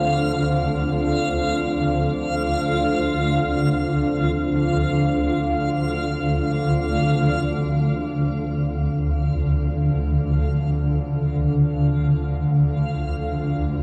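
In free time and D minor, this unsettling, cavernous dark ambient drone, cut from a longer piece and tuned to A4 = 436 Hz, sets an up-front swarming, detuned granular drone from D2 to D3 beneath a deep, warbling sawtooth pad with sub octave, chorus and shimmer reverb sitting in the background on a sustained D minor chord, while a reversed, dreamy triangle texture from F4 to F5 adds bright granular shimmer, all three parts sounding throughout the 13.8 seconds in a vast, echoing space with cassette tape character.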